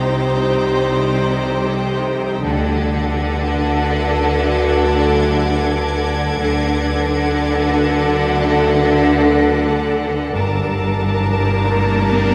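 Set in a wet recital-hall reverb, this tense, ominous cinematic excerpt in free time layers vibrato string sections (a clear violin melody, rich second violins, a high violin texture, focused violas, distant cellos and close double basses) over mellow French horns, a metallic inharmonic drone with chorus, and a very quiet cloudy granular pad that enters at 0.4 s, while dry timpani strikes mark the move from Cm to D at 2.4 s and to Gmadd9 at 10.3 s, after which an electronic riser closes out the cut from 11.1 s.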